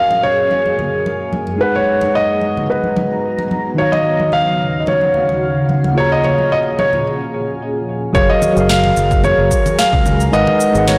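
A dark, intimate grand piano melody with audible action noise and delay opens this wistful, relaxed sunset chillout excerpt at 110 BPM with a light sixteenth-note swing, over a mellow tine electric piano, a shimmering, ethereal pad with chorus and phaser, and bright acoustic congas that play until 7.0 s, drifting through Gbmaj9, Abm9, Ebm9 and Bbm7 in a lush hall reverb; after a break at 7.1 s, a punchy, overdriven electronic kick enters at 8.1 s alongside a round fretless bass and an electronic kit of shaker, congas and sharp snare, all in a blown-out, overdriven recording.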